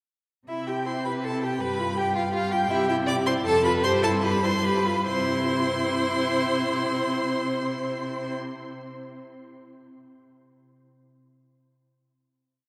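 A long, wet cathedral reverb surrounds this short, complete piece for string quartet, a quick classical-period movement in 3/4 and C major that moves between 136 and 166 BPM with a supple, rubato feel. The mood is spirited and graceful. All four bowed players enter together at 0.5 seconds. The first violin sits close and up front with a warm, expressive tone, soft attacks, vibrato and portamento on the melody, while the second violin doubles the tune an octave below in a smooth, even, full-bodied line. The viola, focused and more distant, rocks through a two-note figure and holds sustained chords, and the cello carries a sustained, expressive bass with vibrato and portamento. The harmony travels from C through G7, F and Am9/G, the tempo slows from 2.1 seconds, and the movement settles on a final C chord at 5.1 seconds that rings into the reverb.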